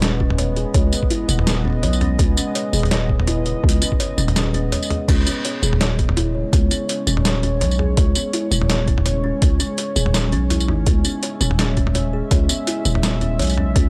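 A dry, gritty hardware recording with lossy compression artefacts carries this dark, cinematic excerpt of half-time drum and bass at 166 BPM in C# minor, swung at 56% on the sixteenths. A deep, moody ambient pad holds sustained chords through chorus, built-in reverb and sidechain pumping, while a woody, hollow kalimba plays soft arpeggios through analog delay; both sit low beneath a growling, buzzy 808-style bass driven by tube saturation. Up front, a compressed, pitched-down sampler-style kit of tape-toned snare, hi-hat, tambourine, toms and crash cymbal is joined at 0.2 seconds by a thumpy electronic kick, and a second drop begins at 5.1 seconds.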